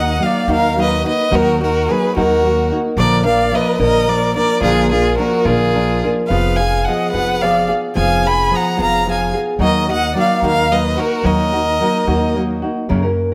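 Festive and romantic, this short mariachi excerpt in 6/8 at 72 BPM in E-flat minor sets a clear, focused bowed violin with vibrato up front on the melody over a second violin line, a full-bodied fingerpicked nylon-string guitar with audible finger squeaks, and a woody, thumpy pizzicato upright bass, all in a recital hall's moderate reverb, with the violins stopping at 12.4 seconds while guitar and bass ring on to 13.3 seconds.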